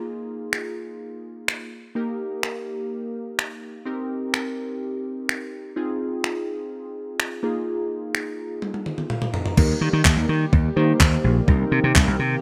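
A rough home-demo mix in digital ambience opens this carefree, upbeat dance-pop excerpt, where glassy, chorused digital keys with a filter sweep and sidechain pumping ride over a gated 80s drum machine, entering at 0.5 s with a thumpy kick, handclaps, finger snaps, toms and crash cymbal. A drum fill from 8.6 s, joined by a keys fill at 8.9 s, leads in before a punchy, bright slap bass and a shimmering, retro pulse-width pad in the background, both pumping, arrive at 9.6 s.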